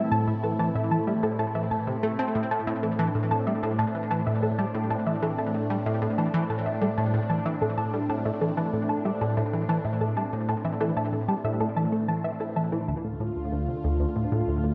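Expansive and cosmic, this ambient, sequencer-driven space music rides a tight, driving sawtooth riff up front, bathed in chorus and tape echo, alongside a swirling, vintage analog pad whose sustained chords are colored by phaser and chorus. A soft, round pluck with a dark edge spins arpeggios through chorus and tape echo until 12.7 seconds, just before the harmony shifts from Am to Dm at 12.9 seconds. The whole echo-heavy mix sits in a wet spring reverb, and this excerpt is cut from a longer piece.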